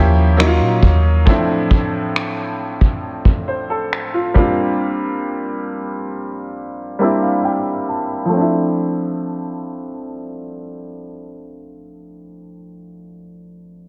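Set in light studio reverb behind a low-pass filter and a faint mains hum, this moody, late-night contemporary R&B excerpt moves at 68 BPM in D minor, with a filter sweep running through its first 8.3 seconds. A clear, worn grand piano sits up front throughout, moving through chords such as Ebm9, Dm9/A and Bb6 and adding a fill just before the second section arrives at 8.3 seconds on Dm7. A deep, round 808-style bass sounds only briefly at the opening, while a small-room brush kit with finger snaps and a tight kick, its top rolled off, plays from 0.4 to 4.6 seconds.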